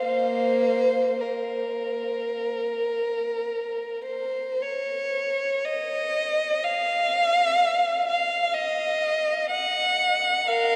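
A single dark-toned violin carries this brief classical excerpt alone, bowed by one player and placed up front, its mournful, yearning voice coloured by vibrato and gliding portamento slides. The playing is free and expressive, moving in a loose rubato over a nominal 4/4 metre, so the pulse stretches and bends with the phrasing. The line spans Bb3 to Gb5. An enormous, wet reverb with an 8.4-second decay places the solo in a vast, echoing hall, each note trailing into a long cavernous halo. The material shifts to a new section at 4.6 s and continues to the cut at 10.8 s, leaving the impression of a fragment lifted from a longer piece.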